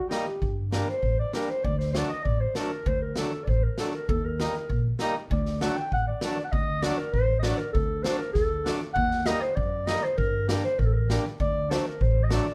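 A straight two-beat klezmer pulse from a street-band drum kit with a boomy kick and an upright bass played pizzicato with a woody tone carries this bittersweet, soulful excerpt, where a gritty, growling trombone sounds only in the first 0.6 seconds as a dark, roomy clarinet takes the melody from the opening, soloing through the first 6.5 seconds over reedy, hollow accordion moving through Gm, D and Eb, the whole heard from further back in a wet studio space with lossy compression artefacts.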